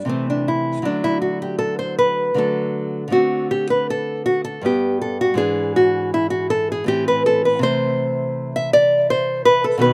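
A solo nylon-string guitar carries this short classical passage, a baroque-style dance in 3/4 at 80 BPM, cut from a longer piece and played with a rubato feel. The fingerpicked tone is bright and small, sitting up front with audible finger squeak, and its range runs from G2 up to E5. The mood is flowing yet solemn, with the harmony moving from Am/C through D and D5 to G, then E7/G# at 5.4 seconds before settling on Am and Am/C near the close. The sound is dry and close, captured outdoors with little reverb and an absence of room ambience, so every detail of the plucked strings comes through plainly. The guitar plays alone for the whole 9.9 seconds.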